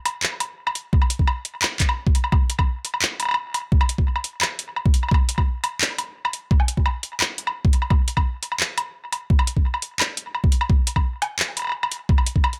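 A layered drum kit opens this dark, heavy drum and bass cut, its handclaps, woodblock and metallic hi-hats sitting up front and trailed by analog delay in a half-time feel. At 0.9 seconds an overdriven electronic kick drum joins with a knocking punch. The kick drops out at 12.4 seconds, and the kit carries the passage to its end at 12.6 seconds. The mix is close and dry, with a small-room character and heavy echo.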